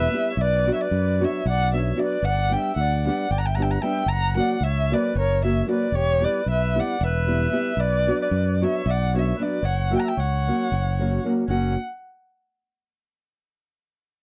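Balkan folk in a straight 7/8 metre, this bittersweet, virtuosic passage is cut from a longer piece. A single bowed violin with a dark tone carries the melody up front, its playing expressive with vibrato and portamento. An accordion adds a reedy, airy second line alongside it, while a small-sounding nylon-string guitar, fingerpicked and close, supplies the accompaniment. A fingered electric bass sits up front with a direct tone, underpinning a progression that moves through Bm, G, F# and Em. The sound is a dry, close studio recording in a 1970s style, with little reverb, and all four parts play together from the opening until roughly 11.8 seconds.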